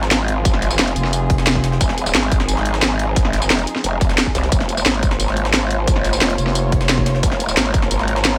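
Dark technical drum and bass at 177 BPM in F minor, this mechanical, aggressive fragment moves from Fm to Bbm/F at 4.5 seconds. A wobbling, formant-filtered growl bass with chorus and tube saturation sits up front beside a bowed string section playing dark sustained chords with vibrato and portamento, both pumping against the sidechain, while a thick FM bass growls in short bursts starting at 1.0 and 6.4 seconds. Up front, a drum and bass kit drives cracking snare, hi-hat and tambourine over a punchy, overdriven electronic kick, and a gritty, pitched-up jungle sampler-style kit with a high-tuned snare sits in the background of an otherwise dry mix.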